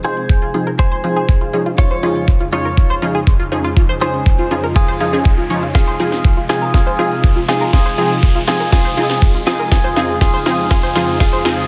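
Progressive house at 121 BPM in F minor, this driving, dreamy build-up cycles between Fm7 and Dbadd9/F. A bright, twangy clean electric guitar carries the melody with analog chorus and dub echo, over a smooth, warbling vintage pad and a mellow sequenced synth arpeggio treated with phaser, while punchy supersaw stabs add cassette-tape grit. Both the stabs and the pad move under filter sweeps, and all four of these parts pump against the up-front knocking kick. Cracking snare and metallic hats round out the drums, a background riser enters at 2.5 seconds, and a drum fill begins at 5.8 seconds.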